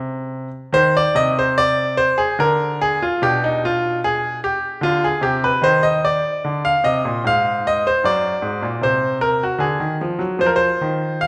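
Bathed in the wet reverb of a recital hall, a bright, polished baby grand piano sits up front, its short-sustained notes ringing into the room in this grave, introspective fragment cut from a longer baroque-style suite movement. Playing solo in C minor at 74 BPM in a rubato 3/4, the piano ranges from Gb2 to F5, moving from Cm at 0.7 seconds through Bdim7 and Cm/Eb to Ab7/Gb before settling on an open F5 at 10.4 seconds.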